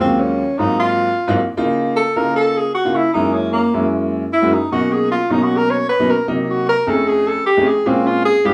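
A breathy tenor saxophone solos from 0.0 to 8.5 seconds in this sophisticated, driving jazz excerpt in Bb minor at 153 BPM, its mellow tone carrying light vibrato and scooped notes. A warm baby grand piano sits up front in accompaniment, moving through rich extended chords from Ebm11 to a closing Bbm9. A small, roomy ambience places the saxophone further back.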